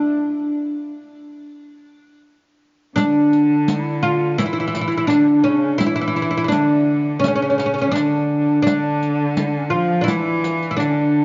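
A home cassette recording, its top end rolled off and set in light reverb with a small room's ambience, captures this soulful, longing fragment of an Arabic maqam ensemble in D maqam nahawand, moving at 84 BPM in a straight 4/4. A woody, fretless oud with double strings sits up front under a cassette-tape colouring and carries the melody alone for the first 3.0 s. Then a mellow, distant clarinet and a rich, bowed cello with vibrato join as second lines, both tape-tinged, while a close riq with dark jingles adds percussion until 11.0 s.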